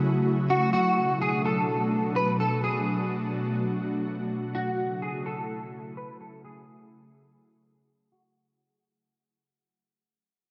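Bathed in a huge ambient reverb, this spacious, ethereal half-time hip hop excerpt at 126 BPM in B dorian sets an airy, detuned pad holding sustained chords that move from F#m7 to Bm7 and back beneath a slightly broken-up electric guitar melody, which enters at 0.5 seconds through chorus and digital delay, while a filter sweep and fade-out run from 0.7 to 8.4 seconds.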